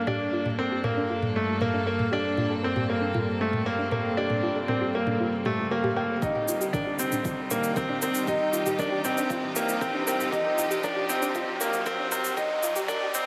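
Hypnotic and melancholic, this 13.3-second excerpt of piano and strings electronica in G minor at 117 BPM builds steadily as a bright, up-front grand piano riff with audible action noise and tape echo rides over reedy, gut-string chamber chords with sidechain pumping, a soft round pluck arpeggio under a filter sweep with chorus and cassette-tape colour sits dark in the background, electronic toms and shaker keep time, a deep, tape-tinged electronic kick enters at 6.2 seconds as the harmony moves from Gmadd9 to Cm, and a faint riser climbs from 4.1 seconds, all bathed in a huge ambient reverb.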